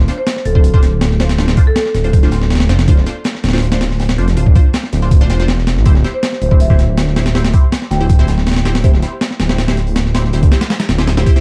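A thick, menacing detuned saw bass drives this frenetic, nostalgic drum and bass jungle excerpt at 161 BPM in D minor, under gritty, thumpy sampler-style breakbeats, a very quiet crunchy second kit with a high-tuned snare, muted filtered dub chord stabs with phaser and dub echo moving from Dm7 to C/D, and a vintage marimba melody with echo appearing at 0.2 and 6.1 seconds, all set in a dark studio reverb with vinyl crackle.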